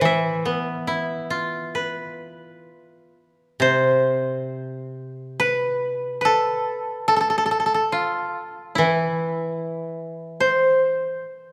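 This short fragment of Japanese traditional chamber music is calm and austere, moving in a free, rubato 4/4 at around 62-75 BPM in E miyako bushi, tuned to A4 = 439 Hz. Two fingerpicked kotos sit up front with a dry, woody tone: one carries the melody between E4 and E5 while the other supports it from A2 to B4, softly set beneath. A moderate concert-hall reverb surrounds them, a new passage begins at 3.6 seconds, and the accompaniment stops at 11.2 seconds, just before the melody ends at 11.5.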